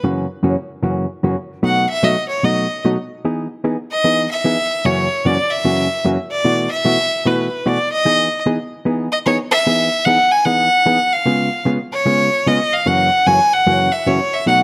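A bowed fiddle and a hollow-body electric jazz guitar start together, both up front, in this cheerful, playful country excerpt in E major at 150 BPM, swung in 4/4. The single fiddle carries the melody with a clear, focused, somewhat boxy tone and light vibrato, taking a solo through the opening 9.7 seconds. Beneath it the fingered guitar accompanies in a dark, clean, compressed voice, moving through changes such as F#7, B7, Emaj7 and B7sus4. At 9.7 seconds the music moves into a new section where the harmony turns to C#7 and then back to F#7. A moderate echo chamber reverb gives the pair a roomy sheen, and the fragment is cut from a longer piece.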